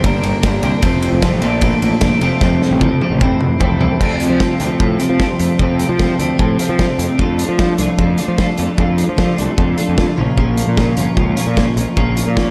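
A bright, twangy twelve-string electric guitar riff drives this upbeat, carefree indie rock passage at 151 BPM in a straight 4/4, sitting up front with a clean, compressed, picked tone shimmering through analog chorus. Beneath it, a fuzz picked electric bass adds a dark, round, punchy overdriven low end, while a loose acoustic drum kit with dark cymbals, a medium-tuned snare and a tight kick pumps in a small room. The harmony in F major moves from Gm through F and Bbmaj7 to Fmaj7, and a drum fill from 2.4 to 4.0 seconds leads into a new section at 4.0 seconds. That later stretch settles on F before turning to Dm and then a surprising Bbm at 10.2 seconds, where another drum fill arrives. Light reverb and small room ambience frame the mix, and lossy compression artefacts colour the sound of this fragment cut from a longer piece.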